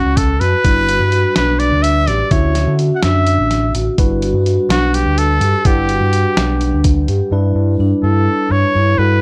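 Bright and intricate, this short excerpt of progressive instrumental band music moves in 7/8 at 251 BPM counted in eighths, with a straight feel in G lydian. A clear, punchy trumpet carries the melody up front with light vibrato, while a mellow vibraphone played with soft mallets rings out metallic arpeggios. Beneath them, an overdriven fingered electric bass sounds dark and round, sitting prominently in the mix. A lo-fi, sampler-style drum kit with a thumpy kick, a medium-tuned snare and hi-hat comes in at 0.2 seconds and drops out at 7.2 seconds, its compressed, muffled tone re-recorded in a large room. A clean tine electric piano joins at 0.6 seconds with direct accompaniment as the harmony moves from F#m through Gmaj7 and Dmaj9, reaching A7sus4/G when a new section begins at 7.3 seconds. Light reverb and digital ambience frame the ensemble.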